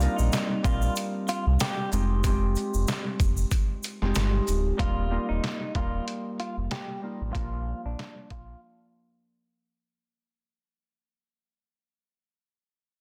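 A mellow, fingerpicked Celtic harp sits up front with a ringing, acoustic tone, and it carries on alone through the break until 10.6 seconds once everything else has dropped out. This short, nostalgic boom-bap hip-hop cut from a longer piece moves over a lightly swung groove through Cm7, Fm7, Ebadd9 and Bb. Underneath, a deep, full sine sub bass with an added octave holds sustained, fast-attack notes, while a sampler-style trip hop kit brings a thumpy kick, medium-tuned snare, handclaps, hi-hat and shaker, sounding compressed, pitched down, muffled and re-recorded in a small room. A clean, fingered electric guitar plays the melody with a warm, compressed sound, bathed in spring reverb and delay, and a grainy, bright tube shaker sits distant in a large room before dropping out at 4.6 seconds. The second half brings a filter sweep and a fade-out, and the dense, heavily limited master wraps the whole mix in digital ambience.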